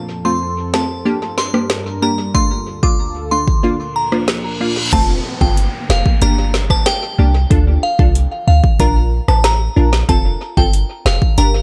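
Sunny, summery dancehall in a straight 4/4, cut from a longer piece, opens with crisp, detuned wavetable chord stabs and a thick sawtooth pad pumping under sidechain, while a crystalline FM bell carries the melody through chorus, phaser and tape echo. An overdriven, electronic afro-pop kit sits up front with a deep kick, woody snare and metallic hats, its kick dropping out from 3.6 to 4.9 seconds as a reverse cymbal and downlifter come in. At 4.9 seconds the pad stops and a clean, boomy sine 808 bass takes over the low end, the echo-heavy, dry mix cycling through F, Gm, Dm and Bb.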